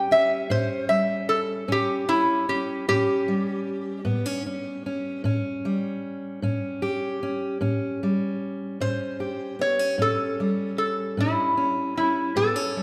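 Swaggering and laid-back, this cut from a longer acoustic country blues rolls along at 51 BPM in a straight 12/8, rooted in A mixolydian and opening on an A7 chord. A metallic, nasal lap resonator guitar carries the melody, played with fingerpicks and a steel bar slide, and takes a solo through the first 7.6 seconds, while a bright fingerpicked steel-string acoustic guitar with fresh strings and an auditorium body supplies the accompaniment. Both guitars sit up front in the moderate reverb of a church or concert hall.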